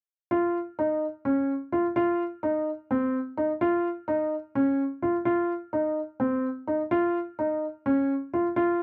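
Brooding and tense, this short progressive instrumental fragment, cut from a longer piece, sets a solo baby grand piano in an odd 7/8 metre with a straight feel, counted at 254 BPM in eighths and tuned to A4 = 436 Hz. Heard from 0.3 to 8.8 seconds, the piano keeps to a narrow middle range from C4 to F4, its dark, mellow tone and short sustain placed up front. Close, detailed microphones and little reverb give it a natural presence.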